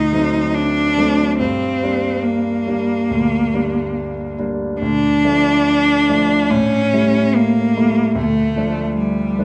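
A rubato 4/4 pulse around 71 BPM carries this yearning, solemn romantic duo in G minor, heard as an excerpt of a longer classical piece. Both instruments are clear and up front: a single bowed cello sings the melody with focused vibrato, while the intimate concert grand accompanies with deep bass, long sustain and audible action noise, moving from D7b9 through Gm and Dm to A7 before settling back on Dm. The whole 9.4 seconds sits in the wet bloom of a recital hall, with a reverb tail of 1.6 s.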